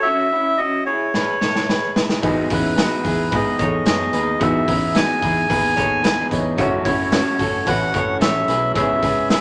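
A reedy, breathy melodica carries the melody up front in this breezy, bright stretch of jangly indie pop, playing from the start alongside an electric guitar through a small old amp whose twangy, slightly broken-up arpeggios shimmer with tremolo. A raw garage drum kit comes in at 1.1 seconds with a fill, its boomy kick and gritty, saturated snare pumping in a small room. At 2.2 seconds the band fills out: a second picked electric guitar adds accompaniment, a woody, slightly detuned upright piano sits very quietly beneath it with audible action noise, a dark, foam-muted fingered bass holds the low end, and a jingly tambourine adds a faint sparkle. The harmony moves from C#m7 to Emaj7, then through F#m7 and back to C#m7, in a straight 4/4 feel. A moderate large studio reverb opens up the space while the top end stays gently rolled off, lending this cut from a longer piece a vintage glow.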